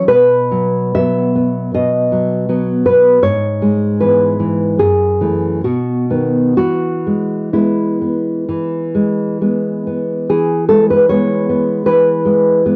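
A solo nylon-string guitar opens on a B chord, carrying a romantic piece in E major with a warm, nostalgic mood. The tempo drifts between 62 and 82 BPM in 4/4, played with a loose rubato feel. The guitar's tone is dark and deep in the classical manner, thumb-plucked and sitting up front, ranging from F#2 to E5. The harmony moves through E/G#, F#m7 and B before settling on E at 6.6 seconds, and the opening theme returns at 10.3 seconds. Light reverb and the character of a home cassette recording frame this short passage, cut from a longer piece.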